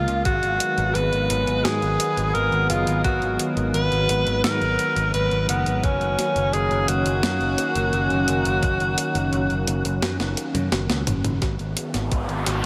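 Moody and nocturnal, this synthwave excerpt moves at 86 BPM in G# minor, with a breathy, whispered tenor saxophone carrying an intimate, up-front melody with vibrato and scooped notes over a shimmering, chorused pulse-width pad that pumps to the sidechain. A bright, growly picked electric bass, a thumpy kick re-recorded in a large room, and an overdriven 12-bit drum machine with high-passed hats, snare and toms hold the groove, and drum fills run from 10.0 s. The saxophone stops at 10.7 s and an electronic riser enters at 11.8 s, all inside a dreamy mix soaked in huge reverb.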